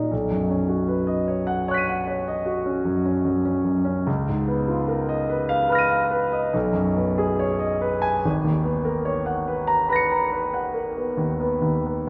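A wet scoring-stage reverb with a 1.5-second decay surrounds this recording, heard from further back in the room, with the top end rolled off above 7.8 kHz. This is a dreamy, luminous passage of impressionist classical solo piano, cut from a longer piece, moving in a rubato 5/4 at roughly 66 to 77 BPM. A concert grand carries it alone from start to finish, its open, up-front tone anchored by a deep bass and spanning G#1 to D#7. The harmony drifts through colour chords: Badd9 at the start, C#13 at 4.1 seconds, then B69 and a closing G#m11 at 8.2 seconds. The result is a soft-focus, glowing wash of rich extended harmony suspended in the spacious ambience of the scoring stage.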